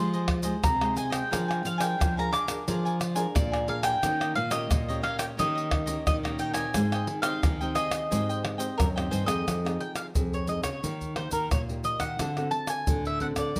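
A woody, double-strung mandolin carries the melody up front in this bittersweet, lively samba and choro excerpt at 88 BPM in Ab major, over a crisp, bright cavaquinho that drops out at 9.5 seconds, a fresh-stringed fingerpicked nylon-string guitar, a second old-stringed nylon-string guitar on bass, and hard-handed tube shaker, pandeiro, tight surdo and tamborim, all captured with close, detailed microphones and light reverb as the harmony moves from Fm9 toward D7.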